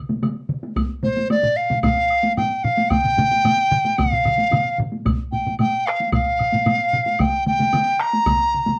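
A short cut from a longer Japanese traditional taiko drum ensemble piece opens at 0.1 s with two layered taiko ensembles struck with hard sticks. One layer carries a vintage, band-limited colour and the other sits close, while a third, sounding as if in a small room, joins at 1.0 s. A woody woodblock enters almost at once, low in the balance, and solo taiko drums played with heavy sticks arrive close at 0.8 s. At 1.0 s a large dizi takes the melody between C5 and Bb5, placed up front above the drums: its bamboo tone is pure and softly attacked, with a buzzing membrane, vibrato, rolled-off highs and an unsteady quality. The pulse moves at a straight 112 BPM in 4/4, and a moderate studio reverb surrounds the powerful, ceremonial sound.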